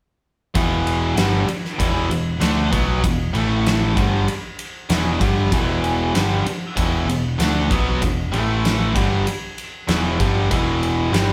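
A steady, straight 4/4 pulse at 96 BPM drives this energetic, powerful hard rock cut from a longer piece, with the whole band coming in together around 0.5 seconds and playing through to the end. Two picked electric guitars carry the riff over E5 and A5 power chords: one biting and overdriven, sitting up front, and the other tight, bright and distorted, a little further back. Underneath, an overdriven picked bass adds a growly, punchy low end. A huge arena drum kit powers it all with a punchy kick, a fat snare and ride cymbal, placed up front in a big acoustic sound. The band plays live in one room, and a moderate stone room reverb gives the performance a solid, resonant space.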